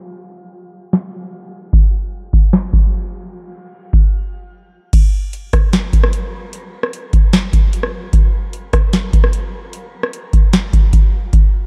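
This hip hop excerpt moves at 150 BPM in 4/4 with a half-time feel, giving it a floating, blissful mood. A booming analog drum machine carries the track, entering at 0.9 seconds and running until 11.4 seconds. Its deep kick and crisp snare sit up front, joined by metallic hi-hats, rim clicks and a crash cymbal. A brief break arrives at 4.1 seconds before a new section opens at 4.9 seconds. The production is dark and warm, with a low-pass filter softening the top end and very little reverb around the drums.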